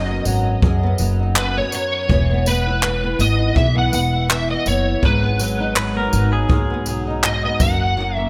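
An overdriven slide guitar sits up front with the melody, its fingered slide lines carried by ensemble chorus and digital delay across this heartfelt, sunny acoustic pop excerpt at 82 BPM in B major, with a light 16th-note swing. Beneath it, a double-tracked flamenco guitar fingerpicks the accompaniment while a woody pizzicato upright bass on steel strings anchors the low end. A jazz brush drum kit enters at 0.3 seconds with a boomy kick, brushes, handclaps and tambourine in a natural studio room sound. At 5.8 seconds a bright, twangy direct-recorded clean electric guitar adds a short picked, compressed second line colored by lush chorus and digital delay. The chords move from B6/F# through E and G#m7 to F#add9, all framed by light reverb, small room ambience and a bright 1980s-style digital production.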